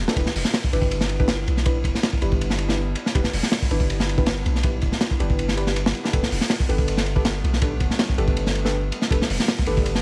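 Drum and bass with a jungle lean at 161 BPM in E minor, this frenetic yet nostalgic excerpt drops in almost at once, with a crunchy, saturated, gritty breakbeat kit up front, its medium-tuned snare, tight kick, hi-hat and dark ride set in a small room over a haze of vinyl crackle. A long, deep 808-style sine bass sits underneath, while deep, nasal chord stabs with chorus and dub echo add a dark glow. In the background, a warbly, detuned tape-like pad with chorus, phaser and its own reverb sustains chords moving from Em7 to Gadd9/E at 6.1 seconds.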